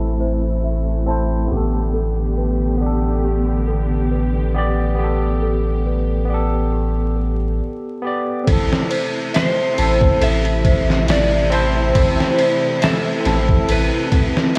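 Vinyl crackle and a small-room ambience under a low-pass filter give this melancholic, smoky trip hop piece a hazy, worn surface. At 69 BPM in A minor, with a lightly swung 4/4 feel, a barky tine electric piano plays the accompaniment, lightly overdriven through a combo amp and coloured by harmonic tremolo, 12-bit sampler grit and tape echo. Beneath it, lush, woody bowed strings hold sustained chords, while a bell-like celesta, mellow and tucked in the background, spins delicate arpeggios through a filter sweep. A deep, round dub sub bass sits up front, and a barely audible electronic downlifter sounds at the very start as the harmony moves from Am to Gadd9/A. After a short break, a compressed, pitched-down sampler-style drum kit enters at 8.5 s with a thumpy kick, medium-tuned snare and ride cymbal, tape-warm and up front. At 9.4 s an electric slide guitar, played with fingerpicks, slightly broken-up and bathed in dub echo, takes the melody.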